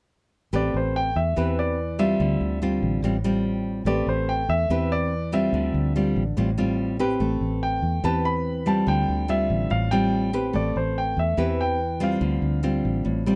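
This short cut from a longer piece sounds close and detailed, with a light reverb around the players. It is a smooth, wistful bossa nova in A minor at 144 BPM in a straight 4/4, with the harmony swaying between Am9 and Dm11 before settling on Dm7 near the end. A fingerpicked nylon-string guitar carries the accompaniment from 0.5 seconds, its classical, acoustic tone sitting up front. A fingered electric bass plays beneath it with a dark, round, foam-muted sound that is direct and amped. A grand piano with a polished, present tone takes the melody in a high register from 0.6 to 12.6 seconds, while guitar and bass continue to 13.4 seconds.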